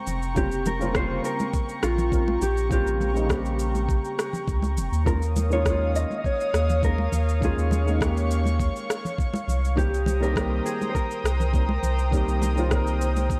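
A round, deep analog bass sits up front in this wistful, smooth sunset chillout excerpt at 102 BPM in Bb dorian, alongside a mellow, clean electric guitar melody with tape echo, a dark baby grand piano with audible action noise, an airy, breathy pad with chorus, a knocking electronic kick, overdriven electronic cabasa and rim click, and damped congas in the background, all moving from Bbm69 through Eb9sus4 to Cm7 under a worn, warbling cassette-tape sheen.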